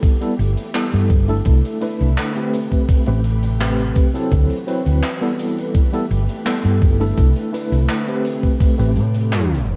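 A worn, slightly out-of-tune tine electric piano with tremolo, chorus and tape echo opens this woozy, nostalgic vaporwave excerpt over lush jazzy chords, backed by a silky string machine in the background and an up-front, thumpy electronic kick, while handclaps and hi-hat from a gated 80s kit ring in a bright stone room. A dark, round hollow-body bass with tube saturation joins at 0.4 seconds, and the whole small-room mix slumps into a tape stop from 9.3 seconds.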